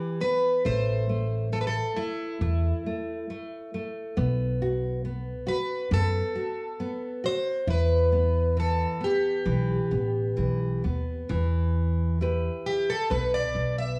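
Rubato and unhurried at 68 BPM in 4/4, this passionate, longing fado-style ballad in E minor is cut from a longer piece, and its tuning sits slightly sharp at A4 = 445 Hz. A picked, plugged-in twelve-string acoustic guitar carries the melody up front with a shimmering, octave-doubled, boxy parlour tone and audible finger squeak. Beneath it, a fingerpicked classical nylon-string guitar with fresh strings supplies accompaniment, and a woody, growly pizzicato upright bass enters at 0.7 s, with a new section arriving at 11.3 s, all heard through a moderate spring reverb and the small-room ambience of cassette tape.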